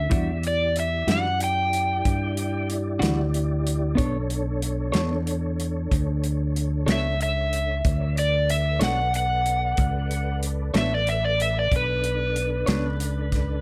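An overdriven slide guitar sits up front and carries the melody as a solo across this brooding, soulful slow blues in 12/8, its gritty lines bathed in plate reverb. Beneath it, a quiet tonewheel organ holds mellow, flute-like sustained chords through a slow rotary speaker and chorus vibrato. A fingered electric bass, round and up front, anchors the low end. A clean, compressed electric guitar adds accompaniment shimmering with harmonic tremolo until 12.9 s. A soul drum kit of hi-hat, tight kick and medium-tuned snare plays with a rolled-off top and a pumping room sound, while the harmony moves from Em9 to Bm9 at 4.0 s in a modest small room that gives this passage, cut from a longer piece, a close, warm feel.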